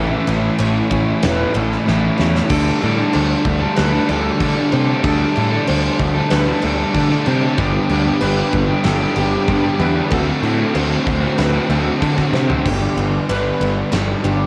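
Blissful and wistful, this excerpt of shoegaze-tinged dream pop rock sits in a straight 4/4 and carries the haze of a home recording on cassette, with light reverb. A picked twelve-string acoustic guitar plays shimmering, octave-doubled arpeggios in the background, its boxy tone and audible finger squeak wrapped in lush chorus and tape echo. Two overdriven electric guitars play riffs: a crunchy one, also treated with chorus, and a darker, compressed one with reverse reverb that drops out at 12.6 seconds. Up front, a fuzz-soaked picked electric bass with overdrive sounds bright and direct. A huge arena drum kit enters at 0.3 seconds in a pumping hall, with a fat snare, a punchy kick, crash and ride cymbals and toms, colored by cassette tape. Fills around 1.9 and 12.3 seconds frame the move from A through a Dsus4, G and D7 progression before the music returns to G.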